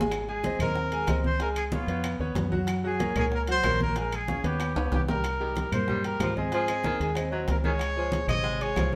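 A punchy, up-front trumpet with vibrato carries the melody through this joyful, sunny salsa excerpt at 187 BPM in Ab major, over a bright vintage grand piano with long sustain, a dark, round fingered electric bass, ringing low-tuned congas, metal-shell timbales, very quiet bongos and woody claves, with a drum fill at 4.8 seconds leading into a new section where a breathy, whispered baritone saxophone adds a mellow second line from 5.4 seconds, all in a live stone-room reverb.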